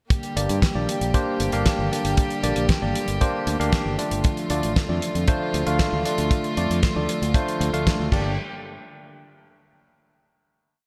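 A barky, lightly overdriven tine electric piano stabs out dotted-rhythm chords up front over a four-on-the-floor kick, a damped 70s drum kit with fat snare and dark cymbals in gated reverb, a bright fingered electric bass galloping in sixteenths, and a rich chamber string section holding sustained chords. Together they give this short, melodramatic and bittersweet italo disco piece in G minor at 116 BPM a bright 1980s digital sheen and lush hall reverb as it moves from Gm to Dm and back to Gm before a final hit at 8.4 seconds.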